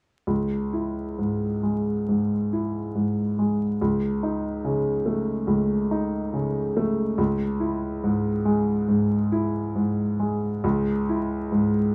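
Brooding and bittersweet, this short excerpt from a romantic classical character piece unfolds at 70 BPM in C# minor, its beats stretched and pulled in a free rubato. A smooth, vintage-toned grand piano sits up front as the sole voice, playing from 0.3 to 11.9 seconds in a low-to-middle range and moving from C# minor to C#sus2 at 3.8 seconds before settling back on C# minor. A moderate large-studio reverb gives the sound space, while a vinyl crackle adds an aged patina.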